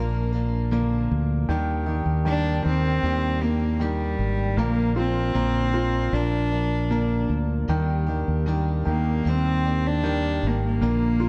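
A dark, softly reverberant small-room sound frames this short 11.3-second excerpt of hopeful, emotional pop in Eb major, moving at an unhurried 78 BPM in a straight 4/4 over chords alternating between Bb and Ebmaj7. A bowed solo cello carries the melody with an earthy, nasal bite and light vibrato, up front beside a round, punchy fretless electric bass. A clear concert grand piano with deep lows supplies accompaniment while a bright, scooped, direct-recorded clean electric guitar picks compressed arpeggios.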